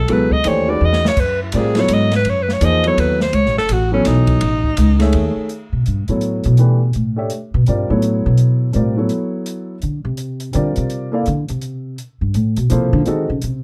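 A clear alto saxophone opens this intense, spiritual modal jazz passage, cut from a longer piece, with a smooth-topped, vibrato-tinged solo that sits up front before it stops at 5.1 seconds. Underneath, the music swings in three, with a woody pizzicato upright bass on steel strings and an intimate baby grand piano whose audible action noise gives it a natural, close presence. An airy, polished drum kit with dark cymbals, a medium-tuned snare and a boomy kick plays throughout, adding a brief fill at 0.8 seconds. From 5.5 seconds the upright bass takes the solo, carrying the rest of the passage over suspended, extended harmonies. Light reverb and a dark, warm production lend the whole a warm glow.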